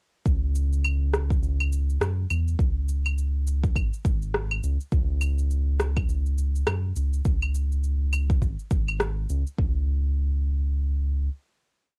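A round, dark analog bass sits up front in this short, complete organic downtempo piece, playing a dub-style line between G#1 and F#2 with a fast attack and sustained, evolving tone, its level pumping against the kick. The mood is meditative and hypnotic, moving at 103 BPM in 4/4 with a 59% swing on the sixteenths, in C# minor and tuned to A4 = 442 Hz. A soft, deep, layered electronic kick drum enters together with the bass at 0.3 seconds, while a quieter organic layered beat of electronic shaker, claves and rim click fills out the groove. The percussion drops away around 9.6 seconds, leaving the bass to hold a final note until 11.3 seconds. The sound is dry and close, with the character of a home cassette recording.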